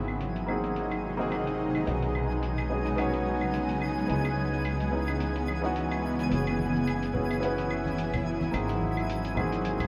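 A shimmering, detuned ambient pad sits up front, its slow-attack chords washed in chorus and reverb beside a polished baby grand piano with short sustain and analog delay, setting a relaxed, wistful sunset chillout mood in a lightly swung 4/4. Underneath, a woody, thumpy upright bass with gut strings holds the low end while a sparkling granular texture twinkles high above, and gritty, tape-warm electronic claves, cabasa and hi-hat sit filtered in the background. Bright, low-tuned congas join at 6.6 seconds, and the whole dreamy passage is soaked in a lush hall reverb.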